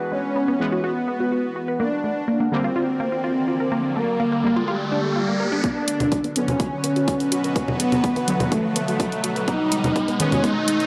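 This cinematic, dark melodic techno excerpt moves at 125 BPM in a straight 4/4 feel in B dorian, with sidechain pumping breathing through the synths from the start. An up-front soft supersaw carries the melody with a smooth, mellow, detuned tone and analog delay, over an evolving wavetable pad whose morphing, bright sustained chords pass through phaser and reverb, and a background analog drone using pulse-width modulation and chorus. A tight, driving sequenced synth spins arpeggios with a filter pluck, phaser and tape echo, while a brassy synth stab sits in the background with a filter sweep, chorus and tape echo, and an electronic riser enters at 3.0 s. The chords move from E to Gm, then to Bm when the build-up begins at 5.6 s, where a punchy, layered electronic kick and tape-warm electronic hi-hat and congas, re-recorded in a large room, join in. A drum fill from 9.5 s arrives over G#m, and the whole is captured with light reverb in a dry, gritty hardware sound.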